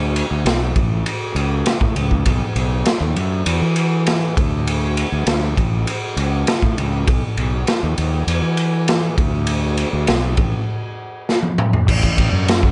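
A warm, fuzzy sound with light reverb and nothing above 10.6 kHz opens this hazy, trippy psychedelic rock excerpt, moving at 100 BPM in a straight 4/4 and tuned to A4 = 444 Hz. A fuzz fingered electric bass carries the low end from the very start, overdriven yet round and punchy, sitting up front as it ranges from A1 to E3. The raw garage drum kit joins at 0.2 seconds, a gritty, saturated acoustic set with a rolled-off top in a small, pumping room, with a punchy kick, a medium-tuned snare, toms, and dark crash and ride cymbals. Both parts sit close and forward, giving the passage a thick, cramped intensity. A drum fill arrives at 11.3 seconds, closing the section just before the clip cuts off at 12.7 seconds.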